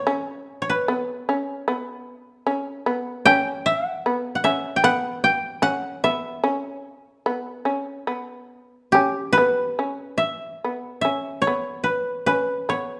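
Austere and solitary, this short excerpt of Japanese chamber music unfolds with uneven, rubato timing in four, drifting freely rather than holding a strict pulse. The koto carries the melody throughout, its fingerpicked tone dry and woody, sitting up front between G4 and G5. Beneath it, the fretless shamisen adds a second line in a narrow low register from B3 to C#4, its plectrum-plucked notes percussive with a buzzing edge, mixed a little lower than the koto. Both instruments play from the opening to the close at 13.0 seconds, with the music shifting into a new section at 9.8 seconds. A moderate recital-hall reverb gives the sparse pairing a sense of space, and the tuning sits just above standard concert pitch.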